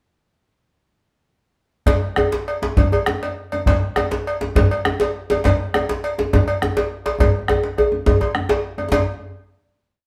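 A tight, cracking djembe sits up front carrying lead drum phrases, driving this short, festive West African traditional drum ensemble piece in 12/8. A second djembe, deep, vintage and band-limited, also up front and struck with hard hands, lays down an evenly spread pattern beneath it. The bombo adds a dark, close and dry low end with its own evenly spread pattern, while a metallic cowbell rings out a bell pattern in a small room. All four parts enter together at 1.9 seconds as a band playing live in one room, bathed in a wet studio reverb, and the ensemble speeds up through the whole piece. A drum fill arrives at 7.2 seconds and leads into a final hit at 8.9 seconds that closes the piece.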